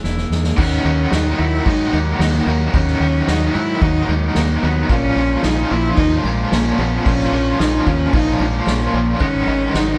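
A straight 4/4 pulse at 111 BPM opens with a drum fill from a soft-mallet kit, its punchy kick, medium-tuned snare and crash sounding distant and roomy. This cinematic, euphoric post-rock passage, cut from a longer piece, is led by a single bowed cello played sul tasto, intimate and close, with light vibrato, a soft attack and an airy bow as it sings between G#3 and E4. At 0.6 seconds a bright, double-tracked, scooped electric guitar joins with an overdriven, picked riff under tremolo, while a growling fingered bass with overdrive sits up front and punchy beneath it. Behind them, a clean, twangy electric guitar picks arpeggios with a warbly pitch drift, and a very quiet glockenspiel struck with hard plastic mallets adds sparkling, bell-like arpeggios high above. The harmony moves from E to D#m, then A#m, and settles on G#m7 near the close, all framed by light reverb that gives the sense of a band playing live in one room.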